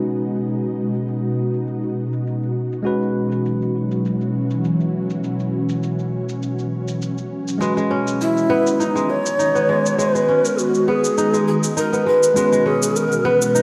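An ethereal, detuned pad and a clean tine electric piano open this mystical, meditative organic downtempo piece in G# minor at 101 BPM, with a tape-warm, filtered cabasa swinging softly beneath, before a ringing fingerpicked kora enters at 7.6 seconds and a mellow, airy low wooden flute with vibrato and chiff takes the melody at 8.2 seconds, all drifting between G#m7 and F#7sus4 in a dreamy mix soaked in plate reverb.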